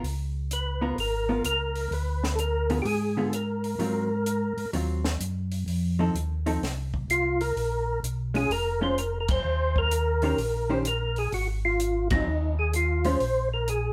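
Swinging eighth notes at 128 BPM in 4/4 drive this greasy, bluesy soul jazz organ trio passage in Ab mixolydian, cut from a longer piece. A mellow tonewheel organ carries the bass line down low, round and up front through a slow rotary speaker, while a compact cocktail drum kit sits further back with a punchy kick, a high-tuned snare, hi-hat and a ride with dark cymbals, all dry and acoustic. A hollow-body jazz guitar comps from the start until 13.2 seconds, clean, picked and compressed with a shadowy electric tone. From 0.5 seconds a second tonewheel organ takes the melody in a narrow upper range, its third harmonic percussion and chorus vibrato giving each note a clicky attack through the same slow rotary speaker. The harmony moves from Db6 through Ddim7, Ab13, F7 and Bbm7 to Eb6, with the whole band hitting accents at 9.2 and 12.0 seconds. A moderate studio reverb places the trio together in one room, giving a live, close-knit sound.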